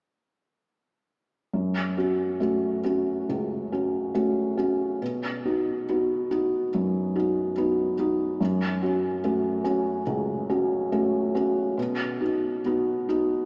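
The recording sits in a church-like space, with a long, wet reverb tail of about 3.1 seconds, yet it comes through with a small-speaker character that makes it feel close and modest. This is neoclassical minimalist piano, reflective and intimate, cut from a longer piece and moving in a loose, rubato 4/4. A single felt-muted upright piano plays alone from 1.5 to 13.5 seconds, placed up front and ranging from C#2 up to F#4. Its tone is soft, dark and mellow, with a vintage quality, and the mechanical action noise of the instrument is audible beneath the notes. The harmony alternates gently between F#m and B, giving the short passage a quiet, contemplative sway.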